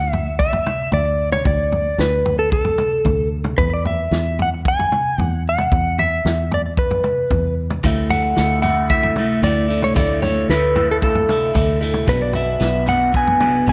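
A light reverb and small-room ambience surround this short cut from a longer psychedelic rock piece, whose trippy, hypnotic mood rides a straight 4/4 pulse. Up front, a clean lap steel guitar carries the melody with slide, volume swells and a slapback echo, its compressed tone sitting high in the mix. Beneath it, a fingered electric bass gives a round, foam-muted low end, while a vintage drum kit with a punchy kick, medium-tuned snare and toms adds a natural, rolled-off top from 0.1 seconds. At 7.8 seconds an electric guitar through a small old amp joins with a picked, slightly broken-up riff coloured by phaser, pushed forward alongside the steel. The harmony drifts from D5 and E5 chords into Dsus2 and finally Bm, keeping the hazy spell unbroken to the end.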